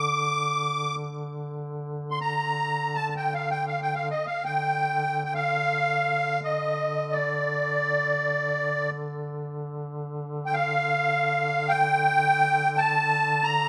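A reedy, shimmering musette accordion sits close and up front, carrying a solemn, longing Caucasian folk lament melody between D5 and D6, over a distant, warm duduk drone on D3 with vibrato, both sounding throughout this 13.7-second fragment of a longer piece in a moderate recital-hall reverb.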